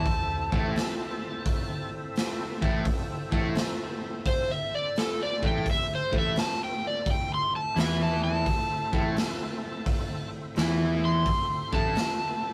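Blues rock power trio meets southern rock in this gritty, smoky excerpt, a swung 86 BPM groove in A minor that sits on a single Am chord. An up-front, overdriven slide guitar carries the melody as a solo across all 12.5 seconds, over a bright, double-tracked distorted guitar riff and a thick tonewheel organ holding sustained chords through slow rotary speaker, light overdrive and chorus vibrato. A raw, saturated garage drum kit with a punchy kick and a pumping stone-room sound drives the hi-hat, snare and kick, while a growly fuzz bass enters at 0.5 seconds, all captured in a rough rehearsal-room recording with light reverb.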